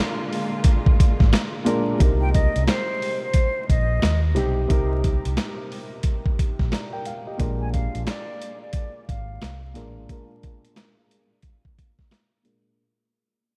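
Drenched in cathedral reverb and vinyl crackle, this dreamy, moody boom-bap hip-hop fragment opens with a dark, woody upright piano colored by cassette tape and a lush bowed string section that stops at 2.0 s, while a gritty, up-front sampler-style drum kit with a thumpy kick, a round, punchy fingered electric bass, barely audible finger snaps and an airy flute with vibrato and a soft attack entering at 2.2 s carry the reflective groove through a long fade-out and filter sweep into a closing break at 10.1 s.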